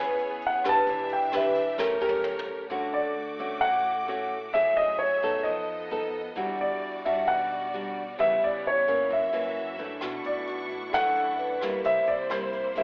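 Sunny and romantic, this bossa nova fragment moves at 131 BPM in a straight 4/4 feel, centred on D major with lush jazz harmony. A dark, mellow grand piano carries the melody up front, taking a solo in the opening bars, while a bright, fingerpicked classical nylon-string guitar accompanies just as close, its finger squeaks audible. Beneath them, a rich symphonic string section holds smooth, bowed chords with vibrato, and a woody, thumpy upright bass in gut strings plucks quietly in the background. A brushed jazz kit with a punchy kick and medium-tuned snare plays a fill around 1.8 seconds, then drops out and returns at 10.0 seconds. At that same point an airy, close-miked alto flute with a crisp attack adds a second line with vibrato. The whole piece sits in a moderate recital-hall reverb with a telephone-like tone.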